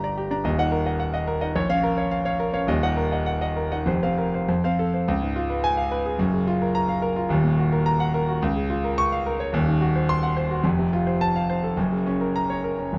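A clear concert grand piano carries this agitated, stormy classical study alone, placed up front with a deep bass and short sustain that keep its natural tone crisp. Cut from a longer virtuoso work, the passage moves in 2/4 with a rubato feel, its range reaching from the low Eb1 to Db6. The harmony churns through Eb minor and Bb minor before settling on F. At 5.1 seconds a new section opens on Db7 and Gbmaj7, then passes through diminished colour back toward F and Gb. Close, detailed microphones and light reverb give the solo instrument an intimate, vivid presence.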